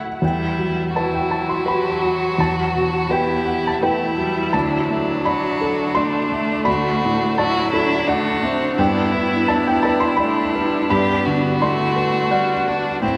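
A long cathedral reverb surrounds this short passage, cut from a longer piece and recorded in a church or concert hall, lending it a hushed, spacious air. It is fragile, melancholic neoclassical music for piano and strings in E minor, moving at 84 BPM in 3/4 with a loose, rubato feel. A felt-muted upright piano opens at 0.0 seconds, mellow and intimate, sitting up front with audible action noise and a short sustain as it supplies the accompaniment. From 0.2 seconds a single bowed violin carries the melody, rich, focused and close, its vibrato smooth on top, while a clear, bowed viola fills in the inner accompaniment beneath it. At 0.9 seconds a lone cello adds an intense second line with its own vibrato. The harmony drifts from Emadd9 to D and then G.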